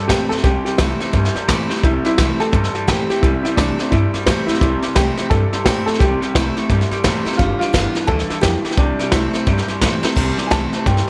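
This rowdy, retro rockabilly excerpt opens with a slightly detuned upright piano carrying the melody, alongside a bright, full-bodied steel-string acoustic guitar picking accompaniment in the background and a twangy, slightly broken-up electric guitar riff bathed in spring reverb. A woody, thumpy pizzicato upright bass on gut strings and a punchy brush drum kit join almost at once, the drums sitting up front with a medium-tuned snare, hi-hat, crash and a rolled-off top. The tempo is a brisk 173 BPM in 4/4 with a swung eighth-note feel, rooted in C mixolydian. Harmony stays on C before moving to G7 at 7.4 seconds and resolving back to C at 8.8 seconds. A drum fill arrives at 10.0 seconds as the passage closes. Light reverb and a small room ambience surround the whole mix.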